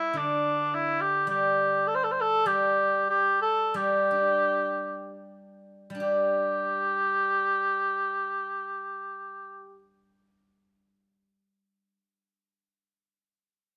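Festive and pastoral, this dry, closely recorded fragment of Chinese traditional music in straight 4/4 moves between 72 and 106 BPM, slowing from 0.7 to 6.0 seconds, as a mellow cor anglais sings the classical-style solo melody with light vibrato until 9.8 seconds over a silvery, ringing steel-string zither played with fingerpicks that carries the accompaniment to the close at 12.0 seconds.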